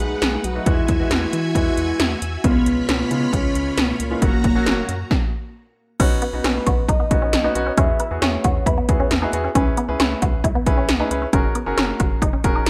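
Punchy 80s electronic pad drums drive this wistful, bright synth-pop fragment, with a gated snare, metallic hi-hats, kick drum and crash cymbal sitting up front alongside a rubbery, hollow square bass and a clear, polished baby grand piano. A round, full-bodied octave-layered synth lead carries the melody with chorus, phaser and delay until 9.3 seconds, while a shimmering, vintage string machine holds violin chords until everything halts briefly at 5.1 seconds. From 6.0 seconds a squelchy, resonant blip pluck adds phased, delayed arpeggios, all within a rough home demo mix with light reverb.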